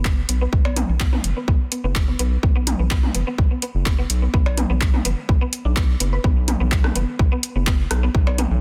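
Minimal techno at 126 BPM in a straight 4/4, clinical and hypnotic, this short excerpt rides a punchy, layered electronic kick sitting up front, with an overdriven analog drum machine adding handclaps and metallic hi-hats while a tape-warm click kit brings in rim clicks, toms and percussion blips from 0.7 seconds. Beneath it, a deep, round analog bass with a wave-folded edge pumps against the sidechain, and a woody, mallet-like FM pluck plays a bright riff through ensemble chorus and digital delay, its arpeggio sound under a filter sweep throughout. The dry, dense mix is heavily limited and modern.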